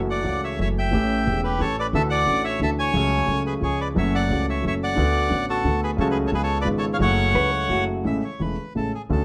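A reedy, bright bandoneon carries the melody up front almost from the first moment, its airy tone touched by plate reverb in this nostalgic, playful tango passage cut from a longer piece. It moves at 177 BPM in 3/4 with a rubato feel, set in F# minor, and the harmony passes through chords such as F#m7, A7, Dadd9 and C#7 before arriving on Amaj7 at 8.1 seconds as a new section begins. Beneath it, a concert grand piano plays accompaniment with an intimate, polished sound, deep bass and short sustain, its action noise audible and its presence just as forward as the bandoneon. A pizzicato upright bass on gut strings adds a woody, thumpy low end. Briefly, from 7.4 to 8.0 seconds, a vintage hollow-body electric jazz guitar slips in a clean, picked, compressed second line with a dark tone. Close, detailed microphones capture the group in a moderate club reverb.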